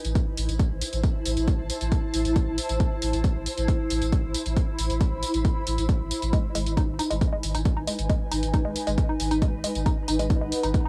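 Dark and driving, this excerpt of peak-time techno runs at 136 BPM in a straight 4/4, with a punchy, up-front electronic kick arriving at 0.2 seconds over a round, deep sub bass that pumps with the sidechain, and overdriven hi-hat and tambourine layered on top. A cloudy granular pad, detuned and blurred in its own reverb, hovers over an Am chord until a woody, warbling wave-folded pluck riff with chorus and analog delay enters at 6.3 seconds as the harmony shifts to G#m. The whole track carries the vintage grain of a home cassette recording with a light touch of reverb.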